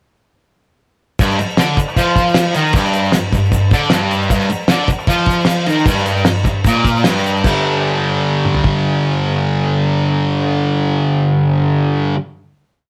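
A rough rehearsal-room recording with a moderate small-room reverb captures a gritty, swaggering garage rock piece at 152 BPM in 4/4, tuned slightly flat to A4 = 436 Hz. From 1.2 seconds a double-tracked, bright fuzz guitar drives a single-note riff up front, backed by a cloth-damped, thuddy acoustic kit with a fat snare, tight kick and dark cymbals in a big rock groove, while a grainy egg shaker sits in the background. At 7.4 seconds the band lands on a G5 final chord, and the guitar rings out until 12.2 seconds.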